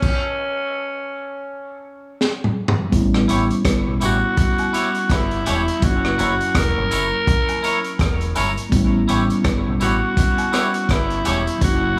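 A light reverb and small-room ambience frame this smooth, longing lovers rock reggae excerpt, which has a swung sixteenth-note feel. A raspy, gritty tenor saxophone carries the melody up front with tape echo, while a mellow tine electric piano plays clean accompaniment through its built-in speakers. The crunchy breakbeat drum kit is the loudest part: a punchy kick, a high-tuned snare, dark cymbals, hi-hat, rim clicks and toms, all saturated and rolled off on top, with gated reverb. After a stop and a drum fill at 2.2 seconds, a deep, round fingered electric bass enters at 2.9 seconds as the harmony moves between A7 and F#7. From 3.3 seconds, a twangy, scooped electric guitar adds picked stabs through analog chorus and dub echo, and a compressed tambourine and woodblock sit in the background with their own dub echo.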